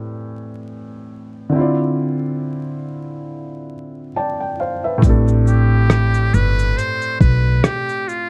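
Lo-fi hip hop with a melancholic, nostalgic mood, cut from a longer piece, opening on a soft, mellow felt-muted upright piano colored by cassette tape, with a brief piano fill from 3.7 seconds. At 5.0 seconds a gritty, overdriven sampler-style drum kit with a thumpy kick, hi-hat, rim click and shaker arrives alongside a woody pizzicato upright bass, and at 5.5 seconds a breathy, buzzy trumpet with metal mute takes the melody with light vibrato. The dark production carries light reverb, vinyl crackle and a gentle swing.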